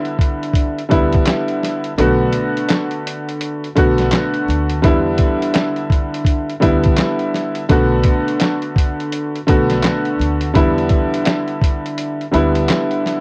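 A clear, intimate upright piano with audible action noise opens this tough, moody boom-bap hip-hop excerpt at 84 BPM, moving between Em7 and Bm7 with a cassette-tape, filtered tone, as a compressed, pitched-down, muffled sampler-style drum kit of thumpy kick, medium-tuned snare, hi-hat and handclaps sits up front on a swung 16th feel, its kick dropping out from 2.0 to 3.4 seconds, while a dark, woody pizzicato upright bass enters at 0.9 seconds lower in the mix of this lightly reverberant home cassette recording.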